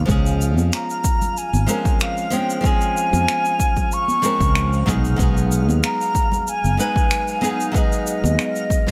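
Sunset chillout at 94 BPM in 4/4 with a light 16th-note swing, smooth and sunny, moving from Dbmaj7 to Cb6 in this short cut from a longer piece. A bright, fingerpicked flamenco guitar with finger squeak and digital delay and a direct, up-front fretless electric bass open at 0.0 s over a faint twinkling granular texture with octave-up shimmer and built-in reverb, while a punchy, overdriven electronic kick sits beside a distant, roomy brush kit with finger snaps, shaker and toms, and compressed, saturated congas stay in the background. At 0.7 s a mellow, airy, hollow concert flute with vibrato and digital delay takes the melody, framed by light reverb and small room ambience.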